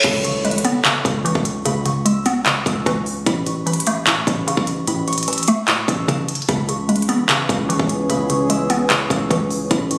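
Captured on a phone in a room with a moderate concert-hall reverb, this menacing, eerie trap cut from a longer piece has a half-time hip hop feel. A reverse cymbal and electronic impact open the first 1.7 seconds, while an up-front trap kit hits with a hard-clipped kick, crisp hi-hats, handclaps and crash. A long, deep sine 808-style bass with a fast attack decays beneath, and a hollow, bouncy square-wave pluck, detuned and thickened by chorus, carries the accompaniment. Above it, a mellow, fingerpicked Celtic harp rings out the melody through a digital delay. The harmony moves from C#m7 to A, and at 6.5 seconds, as it returns to C#m7, a moody analog pad with a slow attack and sub octave swells in with sustained chords under its own chorus.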